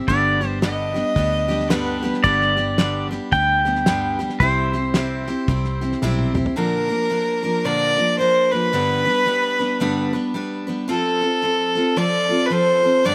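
Down-home and sunny, this honky-tonk and classic country excerpt moves at 111 BPM in 4/4 with a swung eighth-note feel. A bright, full-bodied picked steel-string acoustic guitar with slapback echo carries the accompaniment throughout, while a clean, compressed pedal steel guitar, played with fingerpicks and using slide and volume swells, takes the up-front melody with its own slapback echo until about 6.0 seconds. Underneath, a vintage foam-muted fingered electric bass gives a round, punchy low end, and a damped 70s drum kit with a fat snare, tight kick and rolled-off top keeps time on hi-hat, kick, snare and toms before a drum fill from 6.0 to 6.6 seconds. A rich, earthy fiddle with light vibrato adds a brief second line early on, then steps forward for a biting bowed solo from 6.6 seconds over changes moving through Bb, G and F. The sound is dry and open-air, with little reverb or room sound.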